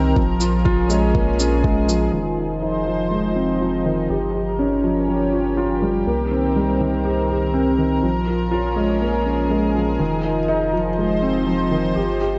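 An echo-chamber reverb wraps this intimate, cinematic piano-and-strings electronica in digital ambience, and the top end stays muted. Up front, a dark, mellow grand piano plays a riff through a low-pass filter and delay, its action noise audible, and a filter sweep on it begins at 2.1 s. Behind it, a lush, detuned unison pad holds bright, airy sustained chords with chorus and sidechain pumping. A round analog bass sits deep underneath, also pumping. An overdriven, layered electronic kick drum and a tape-warm shaker appear only briefly at the start and are gone by 2.0 s, leaving the piano, pad and bass to carry the chord cycle of Bbm7, Fm7, Gm7b5 and Cm7 in this fragment cut from a longer piece.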